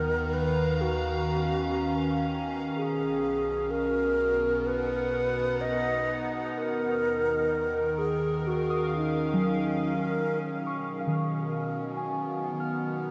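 A slow, straight 4/4 pulse at 63 BPM carries this luminous, weightless ambient passage in B lydian, where an airy, reedy alto flute sings up front with vibrato through shimmer reverb and delay over an evolving, warbling wavetable pad, muted felt-like synth keys spin soft arpeggios through chorus and phaser, a round sub bass fades out by 10.4 seconds, and a string-like bowed drone hovers barely audible beneath, inside a huge, wet reverberant space.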